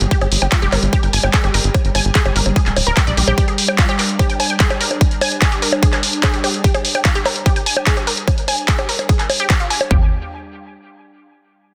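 Psychedelic trance at 147 BPM in G phrygian, hypnotic and driving, where an overdriven big-room kit with a punchy kick and toms joins a techno kit of bongos, handclaps and warm hats recorded in a large room, a tight, dark sawtooth sequencer bass with tube saturation that drops out after 3.3 seconds and returns briefly at 9.9 seconds, a lush, bright, detuned unison pluck riff with dub echo and sidechain pumping, and an evolving, morphing wavetable pad holding a G5 chord with chorus and pumping until 9.9 seconds, when the harmony falls away in this dense, heavily limited excerpt.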